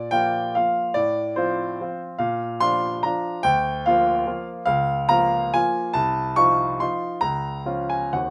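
A polished, up-front grand piano plays alone in this brief, capricious and nostalgic romantic dance in 3/4 at 143 BPM, its dotted rhythms pulled about by rubato and uneven beats as the harmony turns from Bb major to Bb minor at 4.7 seconds, all set in a light reverb.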